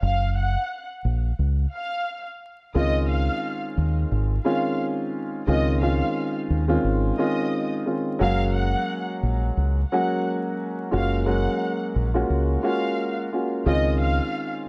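Hip hop with a nostalgic, soulful mood and a swung 4/4 feel, where a round, punchy fingered electric bass sits up front beneath a distant, lush bowed violin section playing an expressive melody with vibrato and portamento, a dark, mellow grand piano with cassette-tape colouring joins as accompaniment at 2.7 seconds over maj7 and maj9 chords, and vinyl crackle and small-room ambience surround this fragment of a longer piece.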